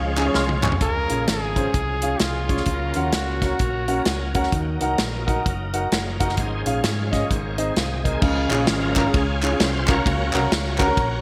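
A shouting, lightly overdriven tonewheel organ holds sustained chords throughout this uplifting, soulful uptempo gospel clip at 130 BPM in Db major, its full chords spinning through a fast rotary speaker with chorus vibrato before it takes a solo at 8.2 seconds. A clear, close-miked trumpet with light vibrato and digital delay carries the melody from 0.8 to 4.3 seconds, while the organ adds short fills around 3.8 and 7.5 seconds. Underneath, a dark, round fingered electric bass and an up-front studio drum kit with a punchy kick, medium-tuned snare, rolled-off top and gated reverb drive a swung 4/4 groove. A warm grand piano with audible action noise, a boxy tone and long sustain fills in the accompaniment, and crisp, band-limited group handclaps sit in the background at the opening and again near the end. The chords move from Db through Gb and Ebm before returning home, all set in a lush hall and a bright 1980s-style digital production.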